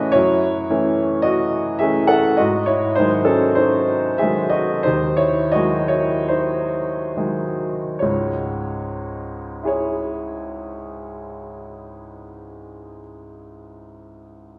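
The rhythm is free and rubato in 4/4, drifting between 33 and 55 BPM. The opening passage gradually slows, giving this romantic classical nocturne fragment a melancholic, wistful mood. A single grand piano carries the whole piece, sitting up front with a clear, open tone and long sustain across a range from C#2 to A5. In C# minor and tuned slightly low to A4 = 437 Hz, the harmony moves from F#m7 to G#7 at 2.4 seconds, then settles on C#m as a new section begins at 8.0 seconds. A wet scoring-stage reverb with a 1.7-second decay surrounds the instrument until the fragment, cut from a longer work, ends at 14.6 seconds.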